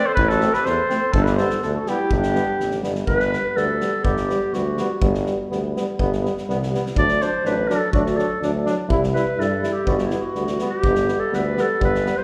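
A smooth-topped clarinet stands out in this festive, virtuosic Balkan brass band excerpt, taking a solo from 3.1 s after a vintage-toned trumpet carries the melody up front and drops out at 2.8 s. A bright trombone and a mellow euphonium, both with light vibrato, sit distant and roomy in the accompaniment, while a clear tuba with vibrato holds down the bass. A loose acoustic drum kit with a fat snare and punchy kick sounds from further back in a straight 2/4, and a recital hall reverb wraps the band in a resonant, churchlike space.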